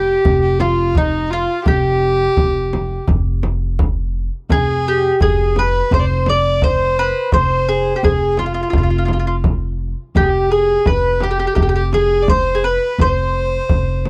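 A straight 4/4 pulse at 85 BPM carries this soulful, melancholic fragment of an Arabic maqam ensemble piece in F maqam nikriz, tuned to A4 = 438 Hz, as a mellow, picked mandolin on double strings leads the melody up front, a reedy, nasal bowed violin with gut-string tone and period styling traces a second line in the same Eb4 to D5 range, an upright bass plucks a woody F1 close in the mix, and a deep, compressed, saturated frame drum struck with soft hands joins at 0.2 s, the whole set in a dry, close 1970s-style studio sound.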